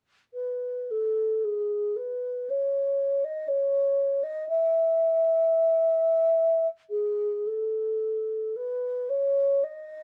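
The rhythm moves freely in a rubato triple metre, with the pulse stretching and relaxing as the line unfolds. This is a short cut from a longer classical piece for unaccompanied alto flute, meditative and lonely in mood, its slow and expressive pace giving each phrase room to breathe. The wooden-headed alto flute plays alone from 0.3 to 10.0 seconds, staying in a narrow span between G#4 and E5. Its tone is pure and mellow, held straight, with clearly tongued notes. The playing falls into two sections, the second beginning at 6.9 seconds. Close, detailed microphones and very little reverb place the instrument up front, so the grain of its tone comes through intimately.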